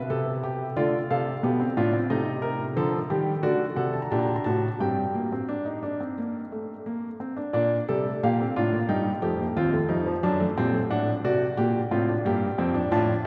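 A baby grand piano opens alone at 0.0 seconds, playing a solemn, contemplative four-voice fugue in the baroque style, in G minor at 90 BPM in a straight 4/4. The instrument sounds intimate and natural, placed up front, with its action noise audible and a short sustain on each note. Its voices span from Eb2 up to Bb5, set in a church with a long, wet reverb. The harmony moves from Am7 through Dm and D7 to a settling Gm, then a second passage from 7.5 seconds travels through Gm/Bb, Cm and D7/F# before returning to Gm. The recording is a portion cut from a longer piece, ending at 13.3 seconds.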